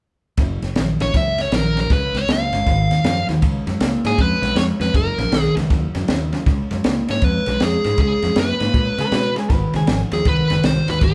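A dark, smooth lead guitar with overdrive sits up front from 1.0 s in this gritty, laid-back, swung electric blues shuffle excerpt, carried by an overdriven, picked rhythm-guitar riff, a round fingered electric bass and a compact cocktail drum kit with punchy kick, high-tuned snare and dry, dusky ride cymbal, while a slightly broken-up, compressed guitar adds a brief second line from 9.0 to 10.0 s, the band captured playing live together in a large studio room with moderate reverb.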